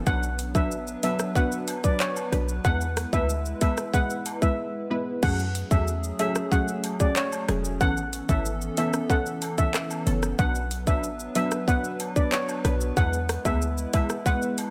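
A punchy, full-bodied chord stab with chorus and a hollow, airy pad with sidechain pumping open this bouncy, sultry dancehall excerpt in F# minor at 93 BPM, soon joined by a shimmering steel pan melody with tape echo, a tight, up-front 808-style bass, an electronic island pop drum kit with metallic hats and handclaps, and distant woodblock and cabasa in the background, all in light digital ambience, with a brief break at 4.6 seconds before the section repeats.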